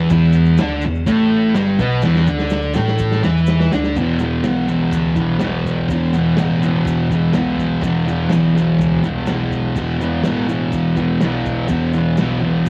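The sound is dry and close, like a home cassette recording. This is a short cut from a gritty, swaggering garage rock piece in a straight 4/4. A thick, dark fuzz guitar sits up front, double-tracked and picked, driving a riff that moves from an E minor chord to a bare E power chord at 4.0 seconds. Beneath it, an overdriven fingered electric bass adds a round, amped low end in the background. A muffled vintage drum kit with a tight kick, medium-tuned snare and dark cymbals stays back in a small room, with a fill from 2.0 to 4.0 seconds that leads into the second section. A grainy egg shaker adds a faint, bright edge from deep in the mix.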